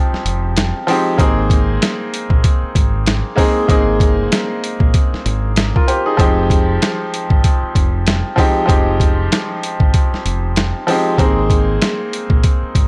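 Boom-bap hip-hop with a tough, reflective mood, this short cut from a longer piece rolls along with a swung sixteenth-note feel in 4/4. A bright grand piano carries the accompaniment from the first moment, its brilliant, intimate tone up front with audible action noise and long sustain, shaped by high-pass and low-pass filtering as it moves between Fm7 and Abadd9. A sampler-style drum kit enters at 0.1 seconds with a thumpy kick, a medium-tuned snare and hi-hat, sounding compressed, pitched down and tape-warm, and it sits up front as the loudest part. A deep dub fingered electric bass joins at the same moment, dark and round in a direct, amped tone down in its lowest register. The whole recording has a dry, gritty hardware character with cassette tape coloring and a touch of digital ambience.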